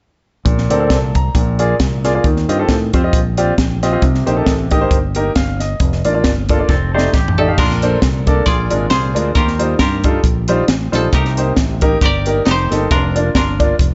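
A swung 4/4 groove at 135 BPM drives this reverent, soulful uptempo gospel excerpt in Bb major, with a crisp fusion drum kit, its high-tuned snare and punchy kick up front, and a fingered electric bass setting the pulse while a clear, intimate baby grand piano comps through rich chords like Bbmaj9 and Eb69, its action noise audible and its sustain long. A drum fill at 6.7 seconds coincides with a brief, twangy, compressed electric guitar line, and from 7.4 seconds a dry, woody koto played with fingerpicks takes the melody as the chord cycle repeats. The mix sits under light reverb with a rolled-off top end, the cut beginning and ending mid-piece.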